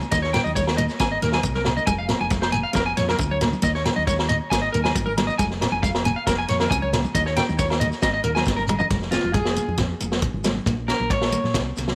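A twangy, slightly broken-up electric guitar sits up front with tape-echoed arpeggios in this bittersweet highlife guitar band excerpt at 137 BPM in F minor, cycling through Eb7, Absus2, Fm and Bbm chords. Beneath it, a bright picked steel-string acoustic guitar, a dark, round fingered bass and a punchy vintage drum kit with a rolled-off top carry a straight 4/4 groove in a small room with light reverb. Grainy shekere and ringing agogo bells sit in the background, and very quiet, damped congas add soft-handed texture. A drum fill at 8.5 seconds leads into a clean electric guitar solo from 8.9 seconds to 11.9 seconds.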